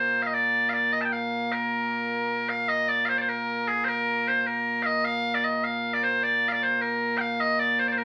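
A loud, piercing bagpipe plays alone from the very start, carrying a stirring, proud Scottish pipe tune in 6/8 at 102 dotted-quarter beats per minute in B-flat major, its continuous tone sitting up front across a range from Bb2 to A5. The short fragment, cut from a longer piece, moves from an opening phrase into a second strain at 2.7 seconds and runs to 8.0 seconds. A small, reverberant room surrounds the pipes, and the crackle of a very old 78 rpm record colors the bright sound.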